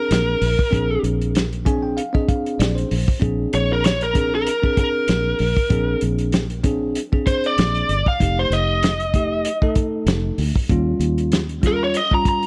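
A dry recording with little reverb opens this gritty, laid-back soul blues clip, built on a straight-eighth groove with a light sixteenth-note swing. Up front, an overdriven lead guitar through a small cranked amp picks the melody over a muffled, lo-fi drum kit with a fat snare and tight kick, and a round, foam-muted fingered bass. A bright, bell-like tine electric piano plays clean accompaniment and adds a fill from 1.4 to 3.2 seconds, while the harmony moves through Bb9, F9 and Eb9 chords.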